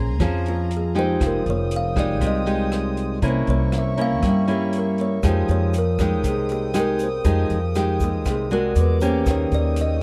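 A straight 4/4 bossa nova pulse at 119 BPM carries this wistful, smooth fragment in F minor, cut from a longer piece. An up-front nylon-string guitar, fingerpicked and full-bodied with audible finger squeak, supplies the accompaniment beside a woody pizzicato upright bass. An open jazz kit with hi-hat, rim click and a boomy kick in a small room enters at 0.2 seconds. A kalimba carries the melody from 0.5 seconds, its thumbnail plucks ringing bright and hollow, close-miked and dry but touched with plate reverb. Behind them a chamber string section holds sustained, reedy chords with light vibrato and a period gut-string tone, and a grainy egg shaker slips into the background at 5.2 seconds. The harmony moves from Bbm9 through Fm9 and C7b9 before turning to E9 and Eb7 at the close, set in a dark, warm production with light reverb.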